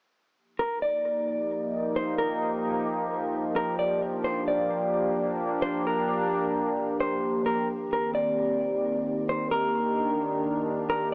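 Floating and blissful, this half-time hip hop excerpt sets a mellow, dark, clean electric guitar melody, softened by a low-pass filter and tape echo from 0.6 s, over an airy, detuned sawtooth pad with chorus that enters at 1.0 s and sustains Ebadd9, Gm7 and Cm7 chords, all bathed in a huge ambient reverb and the worn, warbling pitch drift of old cassette tape heard through a small speaker.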